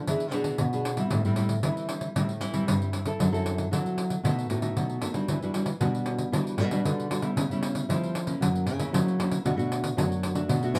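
A jingly, soft-handed pandeiro sits up front beside a thumb-plucked classical nylon-string guitar and a full-bodied, fingerpicked nylon-string bass guitar in this lively, playful 10.8-second clip of samba and choro at 115 BPM in E minor, moving from E7 through Am7, F#m7b5, B7, Em9, C#m7b5 and F#7 to Bm7 inside a moderate small room's reverb.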